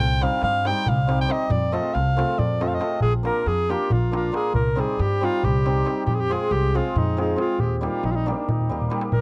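An exuberant, festive Balkan wedding-band piece opens on a clear, classical-style alto saxophone carrying the melody up front. Beneath it, a woody, growly pizzicato upright bass on steel strings plays from the start. At 0.2 seconds a shimmering, ringing hammered dulcimer joins up front as accompaniment, along with a crisp metal-shell darbuka played with soft hands in the background. The tune moves in a brisk 7/8 at 276 BPM counted in eighths, with a straight feel and tuning set to A4 = 445 Hz. It starts in F mixolydian, passing through C minor and F, then shifts to B-flat mixolydian at 3.0 seconds, where the harmony runs through B-flat, C minor, F minor and E-flat. The darbuka plays a short fill near the close, from 8.6 seconds, in a dry, close recording with a 1970s studio character, cut from a longer piece.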